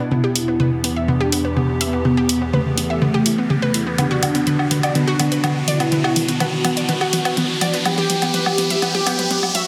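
An evolving wavetable pad and an analog pluck open this melancholic, dramatic melodic techno excerpt at 124 BPM in a straight 4/4. The pad holds sustained chords with a slow, morphing, warbling vintage character and its own chorus and reverb, while the round, detuned pluck spins bright arpeggios through chorus and tape echo. A mellow synth brass melody and a house drum kit join at 0.1 seconds. The brassy lead is dark and detuned, with ring modulation, vibrato, chorus, cassette tape colour and dub echo. The layered, tape-warm electronic drums sit up front, with hi-hat, toms and woodblock caught in a large room. The whole passage is a build-up over a continuous drum fill and a filter sweep, with an electronic riser entering at 0.5 seconds, as the harmony moves from E minor to B minor and back. The sound is dense and heavily limited, set in a wet digital room reverb.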